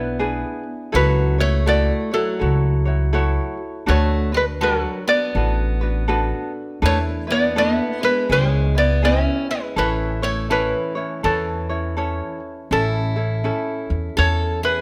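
A fingerpicked ukulele melody, mellow and light, sounds from the first moment of this sunny, dreamy Hawaiian swing at 82 BPM in A major, together throughout with a second fingerpicked ukulele's light accompaniment, a boxy picked archtop guitar second line with audible finger squeak, and an up-front pizzicato upright bass with woody, thumpy gut strings, all captured with close, detailed microphones and light reverb as chords move from E7 through F#m7/C# and D6 to a rest on A before a new section begins at 12.7 seconds.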